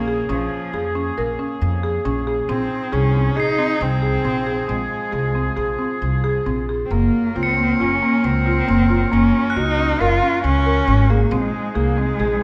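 Contemporary chamber music in a restless 5/4 at 136 BPM, this pensive excerpt sets a rich, expressive bowed cello melody with vibrato and portamento up front over a buzzing, woody marimba struck with hard mallets in arpeggios, pizzicato upright bass, and sustained chords from a smooth-topped woodwind section, while shimmering, bell-like crotales ring in the background from 3.4 to 11.2 seconds, all moving through Bbm7, Fm7/Bb and Gbmaj7 in a moderate recital hall reverb.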